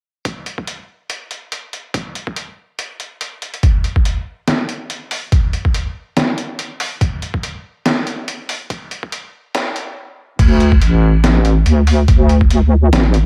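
A lightly reverberant, high-passed mix frames this heavy, dark deep dubstep excerpt at 142 BPM, riding a swung half-time feel in 4/4. From 0.3 s, an overdriven, pitched-down kick with a muffled thump and a compressed, sampler-style trip hop kit of medium-tuned snare, hi-hat and crash sit up front through a build-up with a filter sweep, then halt briefly at 10.0 s. The drop lands at 10.4 s with a deep, mellow wobble bass, a detuned blend of square and sine waves with chorus and a fast attack, sustaining between A1 and D2.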